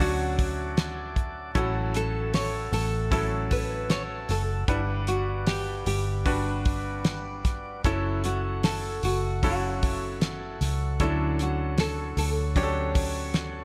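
A straight, unhurried 4/4 pulse carries this heartfelt, emotional pop ballad, cut from a longer piece, with a damped 70s drum kit entering at 0.4 s on hi-hat, tight kick and a fat snare, the whole kit warm and dry with a rolled-off top and sitting up front. Beneath it, a vintage foam-muted fingered electric bass gives round, punchy, dark low notes. A fingerpicked nylon-string guitar sings the melody with a full-bodied, deep classical tone, a touch of finger squeak and a subtle chorus. A brilliant, polished grand piano with short sustain fills the accompaniment, while a soft, flute-like tonewheel organ holds sustained chords high above, also lightly chorused. The harmony moves gently from Dmaj7 through A6, Gmaj7 and F#m7 before settling back on Dmaj7, all framed by a moderate plate reverb and a small room in a bright 1980s-style digital production.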